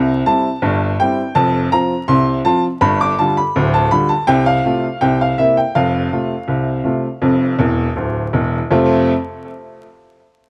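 Jaunty and lively, this brief ragtime excerpt in F major moves at 82 BPM in a straight 2/4, with a clear, woody upright piano playing solo up front through analog delay and a wet studio reverb, ranging from D1 to D6 over chords from C through F5, G5 and C7 back to F, adding a fill at 7.6 seconds and stopping at 9.1 seconds, all wrapped in worn, warbling old tape with cassette tape character, vinyl crackle and warbly pitch drift.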